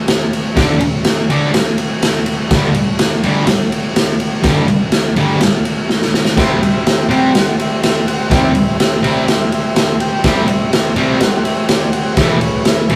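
A raw garage drum kit opens this swaggering garage rock excerpt, cut from a longer piece, at 124 BPM in a straight 4/4. Up front and gritty, the acoustic kit pairs a punchy kick and medium-tuned snare with crash and ride cymbals, its saturated sound pumping in a bright stone room with a rolled-off top. At 0.6 seconds a thick, double-tracked fuzz guitar enters with a picked, distorted riff spanning E2 to D4, moving from D5 to G5 power chords. A drum fill at 5.9 seconds leads into a shift to C, where a mellow vintage combo organ arrives with clean sustained chords between G4 and G5, touched by light vibrato, sitting well beneath the other parts. The harmony turns to E near the end, and the whole has the rough, saturated feel of a rehearsal-room take with moderate reverb.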